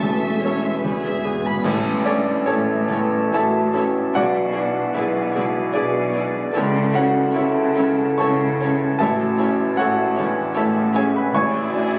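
Classical romantic movement for piano and orchestra in A major, a lush, passionate passage cut from a longer piece, moving in a rubato 3/4 at roughly 68-78 BPM. The clear, intimate grand piano carries the melody up front with long sustain and audible action noise, and a distant symphonic violin section with portamento also takes the melody. A soft-attack chamber violin section, an airy silver flute and a very quiet clarinet add second lines, while a focused viola section and a bassoon supply accompaniment, and smooth cellos and intense double basses (entering at 0.8 s) hold the bass. Hard-mallet timpani, bright cymbals with bass drum accenting 1.6 s, and a mellow French horn section sustaining chords from 2.5 s complete the picture, set in a moderate concert-hall reverb captured on a phone in the room.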